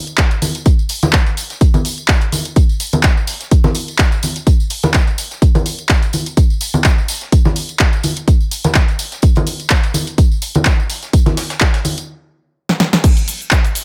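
House drums with a joyful, euphoric lift and a light swing, built from a punchy, up-front electronic kick and a layered house kit of crash, handclaps, hi-hat, shaker and a punchy snare, with a very quiet, gritty, tape-warm sampler-style kit of hi-hat and snare tucked beneath. Ringing tambourine and congas, played with hard hands in a small room, ride along until a stop at 12.1 seconds, and a drum fill arrives at 12.7 seconds. The sound is dry and close, a short cut from a longer piece.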